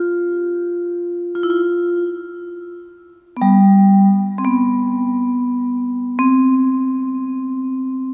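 A solo vibraphone, struck with medium mallets and motor off, sounds metallic and ringing, close-miked and up front with a full body, set inside a cathedral reverb whose long 5.2-second tail hangs around each note. This austere, calm fragment of Japanese chamber music in the traditional style moves at a rubato 86 BPM in 4/4, the vibraphone alone sounding between G3 and F4. The vibraphone plays through the whole 8.1 seconds, cut from a longer piece.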